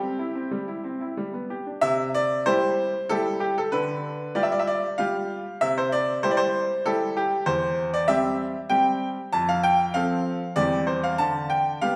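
This cheerful, graceful piano sonatina in the classical-period style moves in a straight three-beat metre at 96 BPM, set in C major. A single baby grand piano carries the whole piece as a solo from 0.0 to 12.0 seconds, ranging from E2 up to A5 with a bright, brilliant and open tone that sits up front. The harmony stays simple and poised, shifting between C, G and F chords with a G7 over D appearing around 3.7 seconds and again near the end. A short opening passage gives way at 1.8 seconds to a longer section that carries the music to the end of the excerpt. The instrument rings out in a reverberant recital hall with a lingering 1.6-second decay, giving the sound the airy spaciousness of a church or concert hall, and the clip is cut from a longer piece.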